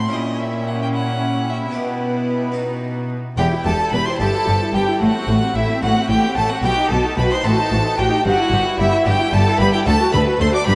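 In a driving 6/8 at 74 dotted-quarter beats per minute, this dramatic E minor baroque-style concerto passage pairs a focused, close solo violin with an intense violin section in the background, a second violin line, lush violas, a rich, smooth-topped cello section and an airy, bright harpsichord, joined at 3.4 seconds by a close double bass section, all set in a vast cathedral echo with vinyl crackle as the harmony moves from a diminished opening through E minor toward a closing D chord.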